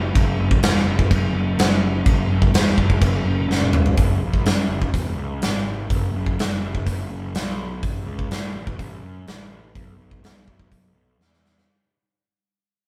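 A growly, overdriven fuzz bass opens this powerful, swaggering hard rock piece at 125 BPM in a straight 4/4, picked up front in a low register with a bright, amped edge. A huge arena drum kit joins at 0.2 seconds, acoustic and natural with a punchy kick, medium-tuned snare, hi-hat, crash and toms, and it drives a fill into the second section at 4.0 seconds before the music begins a long fade-out. The band sounds live in one room with little reverb, and the cut closes on one more drum fill.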